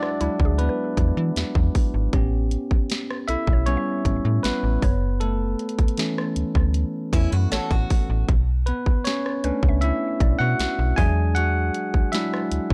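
A dry, gritty sound with transformer saturation, cassette tape character and a digital ambience frames this moody, longing contemporary R&B excerpt in B minor at 78 BPM, where a bell-like, clean tine electric piano takes the solo up front over chords moving from E7 through A7 and F#m7 to Bm7. A trap drum kit with a hard-clipped kick, sharp snare, bright hats and rim clicks sits forward alongside a snappy, metallic slap-like FM bass that enters at 0.2 seconds. In the background, a woody, warbling mallet-like synth pluck drifts through chorus and tape echo, while a boxy picked acoustic archtop guitar adds brief arpeggios with audible finger squeak from 7.1 to 8.3 seconds.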